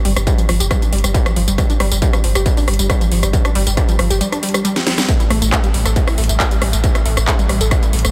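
A detuned sawtooth unison pluck opens this cut from a longer piece of driving peak-time techno at 137 BPM in straight 4/4, playing a punchy, warbling, vintage-toned riff between F3 and A4 with a wave-folded edge, a filter sweep and tape echo. A deep, round sine sub bass holds the low end between G1 and A1 through a low-pass filter, while a distorted electronic kick sits up front with studio reverb. The techno drum kit layers a cracking snare, metallic hats, handclaps, rim click and tambourine, with sidechain pumping on the hats and percussion that also pulls at the pluck and the bass. A short drum fill at 4.8 seconds leads into the move from G5 to A5 at 5.1 seconds. The mood is relentless and hypnotic, set in a light reverb.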